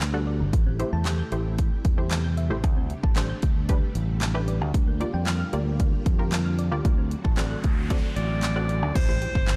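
Dark, warm digital ambience frames this dance-pop excerpt at 114 BPM in a straight 4/4, its mood confident yet bittersweet as the chords move from Gmaj7 through Am7, D7sus4 and Bb6/D to D7. Up front, a layered electronic pop drum kit drives with a punchy kick, fat snare, bright hi-hats, handclaps and crash cymbal, while a round, amped fingered electric bass pumps to the sidechain beneath it. In the background a lush vintage string machine holds slow-attack sawtooth chords with ensemble chorus and a moving notch. A detuned unison pluck adds quick, decaying accompaniment, and both parts breathe with the same sidechain pumping. A gentle, tine-like FM pluck resembling a thumb piano warbles through arpeggios with chorus and dub echo, sitting low in the mix. An electronic noise sweep runs from 7.3 seconds toward an impact at 9.0 seconds, and at 8.2 seconds a clear, forceful alto saxophone enters with vibrato and a smooth top, stating a short pop-style solo melody.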